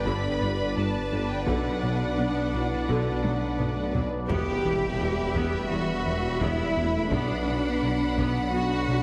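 A close, lush cello section carries the low end of this brooding, futuristic cinematic cue, a hybrid orchestral and electronic film score at 85 BPM in E minor that is cut from a longer piece. Above it, a distant, smooth violin section holds the melody while a brighter, focused violin section plays a second line, and a clear viola section adds intense, vibrato-laden accompaniment in the background. A warbling, lo-fi tape-like pad with chorus and its own reverb sustains nostalgic chords, joined by a mellow French horn section, while a menacing, saturated, detuned saw bass with a filter swell and a round, deep analog bass riff give the electronic side its weight. A very quiet double bass section and a soft solo tuba reinforce the bottom, and a very quiet taiko ensemble played with hard sticks drives the rhythm, with a drum fill from 3.2 seconds leading into a faint electronic impact at 4.3 seconds. 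The harmony moves from G and B minor to E minor, all set in a wet scoring-stage reverb and squeezed by heavy, radio-like compression.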